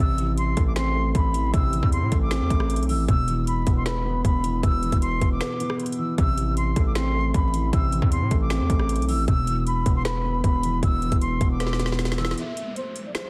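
A distorted 808-style bass, heavy and saturated with a fast attack, anchors this menacing, eerie half-time trap excerpt at 155 BPM in A minor, beside an up-front electronic trap kit of hard-clipped kick, woody snare, metallic hats, finger snaps and rim clicks. A distant, airy concert flute carries the melody with vibrato through a low-pass filter and tape echo, over a soft, felt-muted upright piano with audible action noise, as the chords alternate between Am and E5. A break comes at 5.4 seconds, a drum fill arrives at 11.6 seconds, and an electronic downlifter closes the cut from 12.4 seconds amid vinyl crackle and a dense, heavily limited master.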